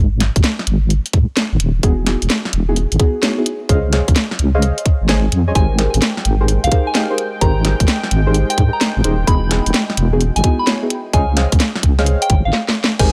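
A swung two-step garage groove at 129 BPM opens with a deep, saturated wobble bass under chorus, joined almost at once by a tight, up-front electronic kick and a garage kit with a cracking snare, hi-hat and crash, bouncy and soulful in mood. From 1.8 seconds, dark, mellow chord stabs carry gritty 12-bit sampler texture and tape echo through maj9 chords moving from Emaj9 to Dbmaj9 to Abmaj9. At 5.6 seconds a pure, warbling FM bell melody with digital delay enters over a smooth, detuned analog pad that pumps and trembles in the background, before a drum fill and stop lead into a very quiet electronic impact at 13.0 seconds.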